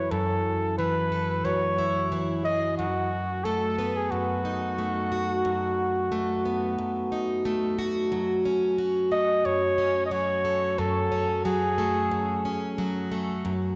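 A gently swung 4/4 pulse at 90 BPM carries this intimate, delicate folktronica fragment in F# dorian, cut from a longer piece. A picked, plugged-in twelve-string acoustic guitar spins dark, shimmering arpeggios from F#2 to G#4, its octave-doubled strings giving a parlour intimacy, with finger squeak and a vintage 12-bit sampler grit roughening the tone, plus a touch of delay. Up front beside it, a warm flugelhorn sings a jazz-style solo melody between F#4 and D#5, shaded with vibrato and trailed by its own delay. The harmony moves from A/F# to B7/F# at 2.8 seconds, then settles onto F#madd9 as a second section opens at 8.1 seconds. The flugelhorn stops at 12.7 seconds, leaving the guitar alone until 13.8 seconds, with both parts bathed in a lush scoring-stage reverb that lends the small ensemble a spacious glow.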